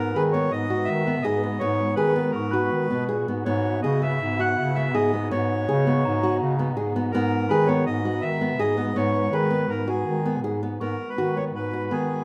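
A restless, hypnotic piece of contemporary chamber music in 5/4 at 163 BPM opens in G# minor, with a reedy, airy accordion carrying the melody up front over fingerpicked classical nylon-string guitar arpeggios and a soft-attacked bass clarinet holding down the low end. Behind them, a dark, lush bowed string section sustains chords with vibrato, while a mellow, bell-like glockenspiel played with rubber mallets adds faint ringing texture, dropping out at 7.3 seconds and returning at 10.8 seconds. The harmony moves from G#m7 to F#9sus4/G# and back in a recital hall with moderate reverb, and the short excerpt is cut from a longer piece.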